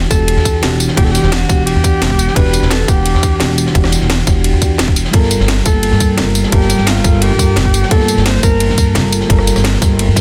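A breathy alto saxophone with vibrato and a soft attack floats over a lush, rolling liquid drum and bass groove at 173 BPM in E minor, backed by a woody, up-front pizzicato upright bass, a round FM electric piano with chorus and tape echo moving from Em9 to Gm9, a tight overdriven electronic kick, a layered kit with cracking snare and bright hats, and a dark, crunchy breakbeat kit tucked in the background.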